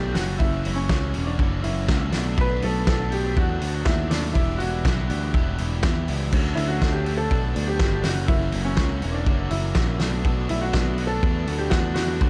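A worn, woody upright piano carries the wistful melody over a soft rubber-mallet glockenspiel line, both trailing dub echo, while an overdriven stack guitar with subtle chorus and a twangy, warbly small-amp guitar jangle through the riff, a round, up-front picked bass anchors the bottom, a loose, gritty drum kit with a fat snare and punchy kick enters at 0.1 seconds, and a very quiet brassy sawtooth pad joins at 6.3 seconds in this echo-heavy 122 BPM indie rock excerpt moving through F#7, Bm7, Em7 and Dmaj7.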